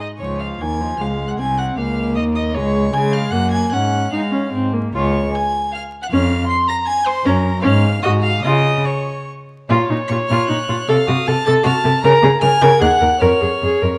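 A quick, restless classical-period string quartet movement in triple time, played with dramatic rubato on gut strings in period style. The close first violin sings the high melody with a rich, reedy tone, though it sits softer in the balance, while the dark, nasal second violin carries a second line, the viola adds light-vibrato accompaniment and the up-front cello anchors the bass. A moderate scoring-stage reverb and vinyl crackle colour the sound, and the music turns more sombre when the second section arrives at 9.7 seconds, before the cut-off near 14.0 seconds.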